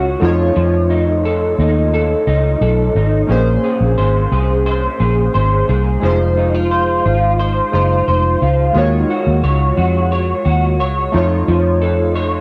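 Hazy and lonely, this indie-pop and bedroom-pop fragment sets glossy, detuned synth keys with tremolo and cassette-tape wear against a slightly broken-up, compressed electric guitar through a small old amp, carrying ensemble chorus, vibrato and tape wear of its own, while a dark, round, foam-muted fingered bass sits up front, all three playing throughout in a small, moderately reverberant home room as the chords move from F7b13 through Bbm9, Fm7 and Ebm11 back to F7b13.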